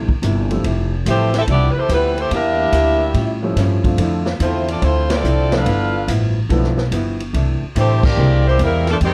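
An edgy, up-front saxophone section with light vibrato carries the melody in this energetic, joyful big band swing fragment at 143 BPM in C major, backed by soft, cup-muted trombones in the distance, a dark, clean hollow-body archtop guitar in the background and a woody pizzicato upright bass. A swinging acoustic drum kit with a punchy kick and ride and hi-hat drives the band, and a warm baby grand piano adds short-sustained accompaniment from 0.5 to 8.4 seconds as the harmony moves through rich jazz changes, with full-band accents at 5.0 and 8.0 seconds. Light reverb and the warbling pitch drift of worn cassette tape give the recording an aged, wobbly character.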